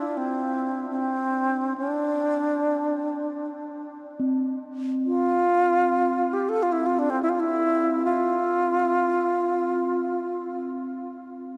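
Spacious and haunting, this free-time world meditation piece in D minor, tuned to A4 = 439 Hz, is a short excerpt cut from a longer work. A bright wooden-headed alto flute carries the melody up front with an airy tone, soft attack, vibrato and a touch of delay until 10.7 seconds. A quartz singing bowl, struck with a suede striker, rings pure underneath with slow beating through 11.6 seconds, all set in a huge, wet ambient reverb within a dark production.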